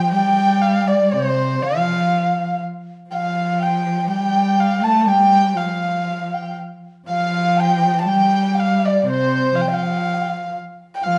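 A slow, straight two-beat pulse carries this graceful, pastoral passage for Chinese chamber ensemble, taken from a longer traditional piece. The dark, woody erhu leads the melody from close up front, its single bowed line shaded with vibrato and portamento. A large dizi adds a second line in the same range, its pure bamboo tone colored by a buzzing membrane, tongued and touched with vibrato, though it sits distant and slightly unsteady. Beneath them, one bowed cello adds a rich, focused second line of its own, also up front and lit with vibrato. The three parts play together from 0.0 to 11.2 seconds, set in a reverberant recital hall with a 1.4-second decay.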